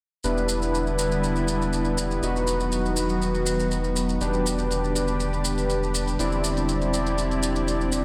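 A straight 4/4 pulse of very quiet electronic hi-hat and grainy, vintage-sounding maracas drives this dreamy progressive house excerpt. Up front, a smooth, detuned supersaw plays sustained stabs through a filter sweep and analog delay, while a deep, saturated sub bass holds E1, and a morphing wavetable pad enters at 0.6 s with slow-blooming, bright chords wrapped in chorus and its own reverb. The harmony moves through Em7, B/E, G/E and Cadd9/E, and a wet plate reverb soaks the mix in a hazy glow.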